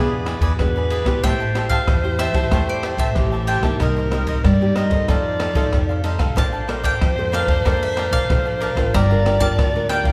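A forceful, close-miked clarinet with vibrato carries a jazz-style second line through this nostalgic, yearning samba and choro fragment, alongside a crisp picked cavaquinho, a full-bodied fingerpicked nylon-string guitar and a woody pizzicato upright bass in the background, while a dark, smooth jazz drum kit with a boomy kick enters at 0.3 seconds and a bright double-strung mandolin takes the melody from 1.2 seconds, all bathed in the reverb of a recital hall.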